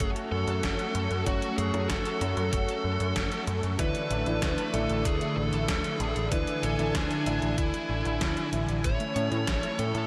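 A moody, nocturnal synthwave passage at 95 BPM in a straight 4/4 opens with everything but one part already in motion, cut from a longer piece. A smooth overdriven lead guitar sits up front carrying the melody with tape echo, over a silky, bright analog string pad whose sawtooth chords evolve with ensemble chorus and vibrato. Beneath them, a deep dub picked electric bass, round, dark and saturated through tubes, anchors the low end. A thumpy, tape-warm electronic kick and a gated 80s digital drum machine supply the beat, the machine's hi-hat and snare overdriven and splashed with gated reverb, while a very quiet, intimate grand piano adds short stabs with audible action noise until 8.8 seconds. The harmony moves from F#m to Dsus2 and then to A, where a mellow, tine-like FM pluck with chorus, 12-bit sampler grit and tape echo enters in the background with arpeggios at 8.8 seconds. The whole mix is soaked in a huge ambient reverb, giving it a dreamy, drifting haze.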